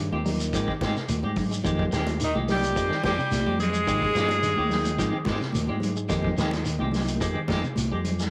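A clear, punchy tenor saxophone carries the melody up front from 2.2 to 5.2 seconds, its light vibrato and smooth top shadowed by a raspy, gritty second tenor with scooped notes playing a lower line. This is an intense, defiant afrobeat passage cut from a longer piece, moving at 108 BPM in a straight 4/4 in F minor, with the harmony alternating between Abmaj7 and Fm9. Beneath the horns, a bright, twangy electric guitar picks arpeggios in the background while a second clean guitar adds stabs through a tremolo effect, and a dark, round fingered bass anchors the low end. A soft, flute-like tonewheel organ with key click and a slow rotary speaker sits in the background, alongside high-tuned congas heard from a distant large room and a grainy shekere. The vintage drum kit brings kick, medium-tuned snare and hi-hat with a saturated, rolled-off top, while moderate spring reverb and cassette tape colouring on most parts give this home recording its aged character.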